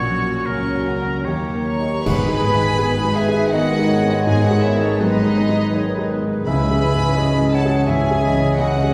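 In a rubato 3/4 at 83 BPM with uneven beats, this excerpt of a moving, longing film score opens on F#/A# and D#7 as sul tasto violins float a pure melody over a richer second violin line, a warm oboe up front, a soft felt-muted upright piano with audible action noise, very quiet viola, a ringing thumb-plucked harp, and close cellos and double basses beneath. At 2.1 s the harmony turns to G# minor with a band accent: mellow French horns enter with sustained chords while bright cymbals with bass drum and articulate hard-mallet timpani mark the moment, a silvery flute having already joined at 1.7 s and a dark, smooth clarinet following at 2.8 s. The passage settles onto C# minor at 6.5 s, all bathed in a wet scoring-stage reverb heard from further back in the room.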